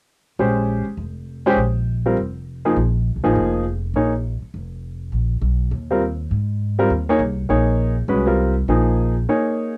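Recorded at home on cassette with light reverb, this short excerpt of up-tempo jazz at 203 BPM swings in Bb dorian with an intense, searching mood, tuned to A4 = 437 Hz. A clear, natural baby grand piano with short sustain and a touch of tape colour carries the accompaniment up front, moving from Bbm69 to Ab/Bb at 5.1 seconds. A woody, pizzicato upright bass on steel strings sits close beside it and drops out at 9.2 seconds, just before a brief break arrives and the piano stops at 9.7 seconds.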